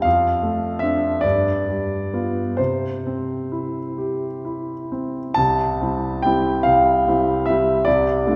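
A smooth, vintage-toned grand piano sits up front in this dreamy, nostalgic romantic nocturne, moving through Dm7/F and G7 before settling on C in a flowing 12/8 with an unhurried rubato. The piano's range spans from C2 up to A5, and a second section begins at 5.4 seconds before the harmony turns to Dm7/C near the close. A lush church reverb surrounds the instrument, giving this brief excerpt from a longer piece the glow of a resonant hall.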